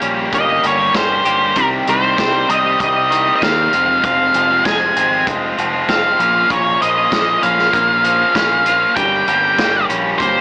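Indie rock in F minor at 97 BPM, this short excerpt cut from a longer piece has a bittersweet, moody feel, heard through a thin AM radio sound with light reverb. A dark, fuzzed-out octave lead guitar sits up front carrying the melody from 0.3 seconds, riding above two overdriven rhythm guitars playing a riff: a cranked stack guitar, bright and forward, and a biting guitar with subtle chorus tucked in the background. Underneath, a growling picked electric bass adds its own overdriven grit, while a vintage acoustic drum kit with a punchy kick, medium-tuned snare and hi-hat sounds natural and warm, its top end rolled off as if in a studio room. The chords move from G diminished through C minor, F minor and B-flat minor before returning to G diminished, giving the steady straight groove a shadowed, unresolved pull.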